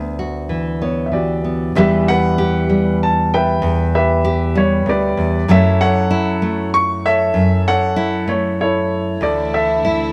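In a three-beat waltz time, this nostalgic, intimate acoustic folk-pop ballad excerpt opens on a full-bodied, fingerpicked nylon-string guitar with a deep classical tone, is joined at 0.8 seconds by a woody, polished upright piano carrying the melody up front with long sustain, and gains a dark chamber string section, bowed sul tasto with light vibrato and a soft attack, at 9.2 seconds, the whole mix sitting in a moderate spring reverb as the chords pass from Em9/D to Em, F#m7 and Dsus2.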